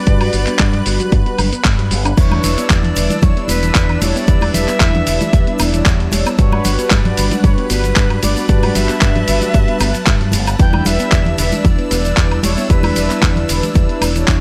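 A punchy, up-front electronic kick and a gritty sampler-style kit with handclaps, hi-hat, shaker and woodblock drive this sleek, groovy nu-disco excerpt, joined by a round, envelope-filtered fingered bass, mellow synth brass with chorus and sidechain pumping, a lush background pad, a very quiet soft pluck arpeggio, tube shaker and congas entering at 2.2 seconds, and a distant, airy jazz flute melody with vibrato and analog delay over Gmaj7 and Em7 chords.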